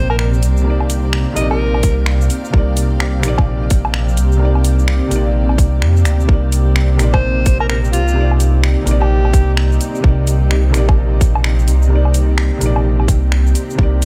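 A swung 128 BPM groove in 4/4 drives this wistful, melancholic future garage piece in C minor, with a tight, up-front electronic kick arriving at 1.8 seconds beneath a garage kit of finger snaps, metallic hi-hats, shaker and woodblock. A deep, rumbling detuned saw bass sits loud and dark under a soft, felt-muted upright piano with audible action noise and a blurred granular cloud pad holding a Cm9 chord, all three pumping with sidechain. A breathy, whispered alto saxophone carries the melody in two brief phrases, the second entering at 7.1 seconds, its tape echo shared only with the piano in a mostly dry mix.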